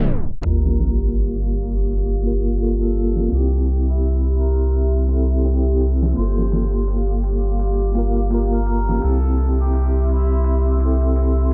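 Trip hop with a cinematic, smoky mood, heard as a short section cut from a longer piece, opening on a tape stop before the groove settles into a lazy swung feel. A deep, round sub bass sits up front, while a mellow tine electric piano with tremolo and tape echo plays the accompaniment over a dark, detuned analog pad whose chorus and 12-bit sampler grit give it a moody, full-bodied haze. A sampler-style drum kit, pitched down and compressed, with a thumpy kick and medium-tuned snare under low-pass filtering, stays in the background from 0.1 seconds. An electronic sub drop arrives at 0.4 seconds, just before a distant, roomy harmonica enters at 0.5 seconds with light vibrato and tape echo, carrying a classical-style solo melody. The harmony rocks between Gm7 and C, and the whole mix is wrapped in vinyl crackle, a low-pass filter and light digital reverb.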